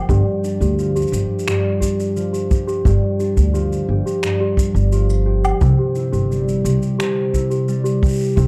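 A dry, close recording with a 1970s studio feel frames this delicate, autumnal folktronica excerpt, where a mellow, thumb-plucked concert harp rings out arpeggios through tape echo, joined almost at once by a sweet, bell-like celesta line, also echoed. A woody, growly pizzicato upright bass sits up front beside a boomy, natural kick played with brushes, while soft shaker, finger snaps and woodblock add light texture. The harmony rests on G5 before shifting to C at 5.6 seconds.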